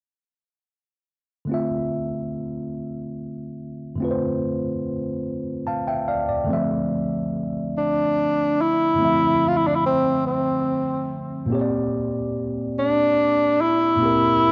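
Home-cassette sound bathed in a lush hall reverb frames this yearning, late-night R&B excerpt in a slow 6/8 at 48 BPM in D minor, where a worn, slightly out-of-tune tine electric piano sets up a Dm9 chord from 1.5 seconds before an up-front, breathy tenor saxophone enters at 7.8 seconds with a mellow, jazz-style solo of scooped notes and light vibrato, and the harmony moves to Bb6 at 11.5 seconds.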